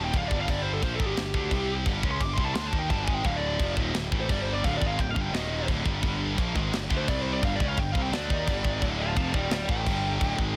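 A dense, heavily limited modern master set in a small room gives this short heavy metal cut a compact, crushing sound, its mood aggressive and dark at 172 BPM in a straight 4/4. A dark-toned, high-gain lead guitar carries a soloing melody from the first second, ranging between G4 and D6 over a churning bed of riffs. Two picked, high-gain rhythm guitars with a bright edge grind out the riff from D2 to Eb4, one of them very quiet. A double-tracked, compressed fuzz guitar joins in the background at 3.2 s. Up front, a growly, overdriven electric bass with a direct-and-amped character anchors the low end, while a tight acoustic drum kit, mid-forward and rolled-off at the top, punches with crash cymbal, tight kick and medium-tuned snare. The harmony cycles through D5, G5, C5, Dm and Eb5, with the passage cut from a longer piece.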